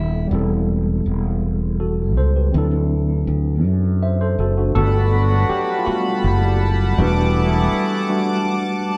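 A worn, slightly out-of-tune tine electric piano with light overdrive and a bright, up-front fretless electric bass open this late-night, yearning slow R&B in 6/8 at 54 BPM, moving through Am9/E and D9 before the piano takes a solo at 4.7 seconds over Gmaj9 and Em11, joined at 4.8 seconds by a shimmering, retro chorused pulse-width pad and stabs from a dark horn section with light vibrato and octave doubling, while the bass drops out at 7.8 seconds, the band playing live together in a lightly reverberant room.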